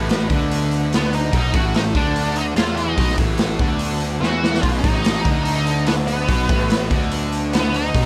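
Raunchy and driving, this short cut from a longer piece is blues rock and southern rock in the power-trio mold, played with a straight 4/4 feel. A cranked, double-tracked stack guitar plays a bright, picked riff low in its range, joined by a growly, fuzzed electric bass that is both direct and amped. The raw garage drum kit sits up front with a boomy kick, a medium-tuned snare and hi-hat, its saturated, rolled-off sound pumping in a small room, and a drum fill lands at 4.2 seconds. From 1.0 seconds an octave-fuzz lead guitar carries the melody with a dark, distorted tone and wah. Beneath it all, a very quiet overdriven tonewheel organ holds thick, gritty sustained chords with third-harmonic percussion through a fast rotary speaker, while small room ambience surrounds the band.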